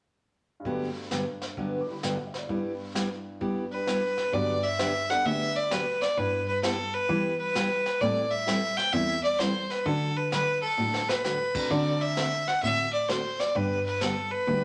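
Swung eighths in 4/4 drive this playful, cheerful western swing excerpt, set by a vintage brush drum kit with dark cymbals and a punchy kick, and a picked steel-string acoustic guitar with fresh strings and audible finger squeak. A worn, woody, slightly detuned upright piano adds accompaniment early on, a clear, biting, nasal fiddle with light vibrato carries the melody up front from 3.7 seconds, and a rich, reedy bowed cello takes the bass from 4.3 seconds. A drum fill arrives at 10.8 seconds as the harmony moves from Gmaj7 and Em/G through Am7 and D7 to G, inside a wet studio reverb.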